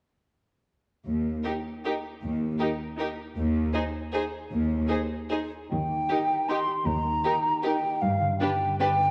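A close, bowed cello section opens this short classical excerpt at 1.1 s, setting a lush, up-front bass line in Eb major at 155 BPM in an uneven, rubato 3/4. At 1.4 s the upper strings join: a rich violin section carries the melody from the background with a smooth top, a second violin section adds an even, warm second line, and a distant, clear viola section fills in the accompaniment, all bowed with vibrato. The mood is elegant and sweeping, with the strings sounding focused and full as the harmony moves toward an Eb chord and then a G7. At 5.7 s the second section begins as a silver concert flute steps forward with an airy, mellow second line and soft attacks, while a concert harp adds ringing, thumb-plucked arpeggios. The whole is bathed in wet concert hall reverb and colored by worn, warbling old cassette tape with a warbly pitch drift.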